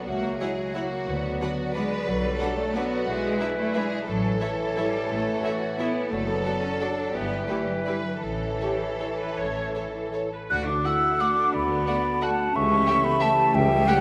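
A mellow, hollow concert flute stands out at the top of this sweeping, elegant orchestral ballroom waltz in 3/4, its airy, soft-attacked line sitting above a rich, lush violin section that carries the melody with focused vibrato and a rubato lilt. Clarinet adds a clear second line, a very quiet second violin section adds another line in a similar register, and violas fill in smoothly in the background alongside mellow French horns holding sustained chords. Underneath, a distant cello section and an intense, bright double bass section anchor the bass, while a ringing, fingerpicked concert harp spreads arpeggios across its range and a present bassoon accompanies until about 10.3 seconds. At 10.5 seconds the music moves into a new section, where a tight trombone section and a very quiet tuba join with sustained chords and bass. The whole ensemble sits in a wet scoring-stage reverb, and the passage is cut from a longer piece.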